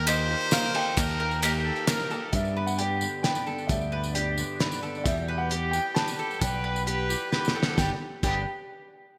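A cloth-damped, thuddy drum kit sits up front with a fat, saturated snare and gated reverb, driving this anthemic, nostalgic indie folk fragment in 3/4 alongside a direct, amped fingered electric bass, a jingly tambourine and, until 2.0 s, a crisp group handclap. A dark, woody upright piano with digital delay carries the melody while a bright, distant trumpet adds a second line, and a round, double-strung mandolin plays arpeggios over a boxy old ladder-braced acoustic guitar with lush chorus. A softly vibrato brass ensemble holds chords until 2.3 s, when a fingerpicked steel-string acoustic guitar with analog chorus enters in the background until 5.1 s, and a drum fill leads into the closing stretch, all set in a lush hall reverb with a bright 1980s-style digital production.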